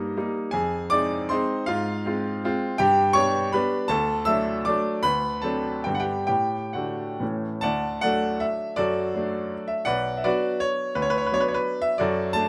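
Dotted rhythms lilt through a triple-time dance, pulled and stretched with free rubato in this short romantic classical piece for solo grand piano. The mood is proud and graceful, and the piano carries everything alone from 0.0 to 12.5 seconds, spanning a broad compass from the low bass up into the high treble. Its tone is bright and brilliant, open and up front, caught by close, detailed microphones inside a recital hall whose moderate reverb lingers for about 1.7 seconds. The harmony opens on darker, more distant chords such as Eb/G and Fm7 before settling through G, D and D7 and arriving on A. A new passage begins at 7.6 seconds on D, moving through D/F# to Bm, and the music breaks off there as a fragment of a longer work.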